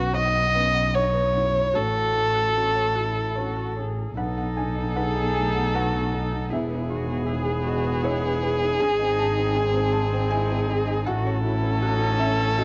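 Neoclassical piano and strings at 78 BPM in a rubato 3/4, fragile and reflective, with a veiled, con sordino solo violin carrying the melody up front through tape echo over a bowed muted double bass, a dark cello second line, a felt-muted upright piano's mellow, short-sustained accompaniment, and a very quiet glassy wavetable pluck with chorus tracing arpeggios, joined at 4.2 seconds by a softly vibrato viola, all in light studio reverb in this fragment of a longer piece.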